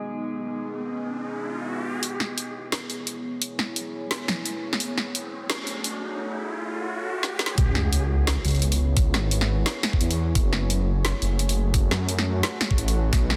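Dark and heavy, this half-time drum and bass excerpt at 173 BPM in C# minor opens on a deep, moody ambient pad with chorus and pumping sidechain, joined by a riser with sub drop and, briefly, an eerie, metallic inharmonic drone, before an overdriven kit of woody snare and bright hats enters at 2.0 seconds to build over C#m7 and F#madd9 chords, and at 7.6 seconds the drop lands with a knocking, layered electronic kick and an up-front, rumbling, detuned saw bass in a dense, heavily limited mix.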